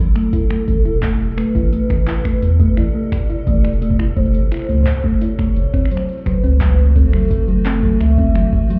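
IDM with a cerebral, glitchy mood, cut from a longer piece and heard as if muffled through a wall in a club-like reverb. A warbling, detuned lead carries the melody with lush chorus, 12-bit sampler grit and digital delay over icy, crystalline pad chords, while a tine-like, thumb-piano-style synth pluck spins arpeggios through tape echo from 0.2 s. A round, deep analog bass sits up front beside a compressed, pitched-up, thumpy kick, and a faint drum machine adds finger snaps, handclaps and metallic hi-hats as the harmony moves from Amadd9 to F#m7 at 5.6 s.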